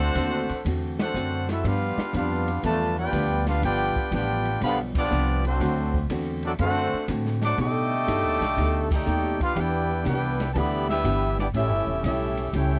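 Big band swing full of energetic joy, with a clear, up-front trumpet section carrying the melody over a mellow trombone section's second line, a dark, compressed archtop guitar comping, a woody, thumpy upright bass and an airy drum kit with dark cymbals and a boomy kick, the whole band hitting accents at 0.9, 4.9 and 8.8 seconds in a dry, close 1970s-style studio sound.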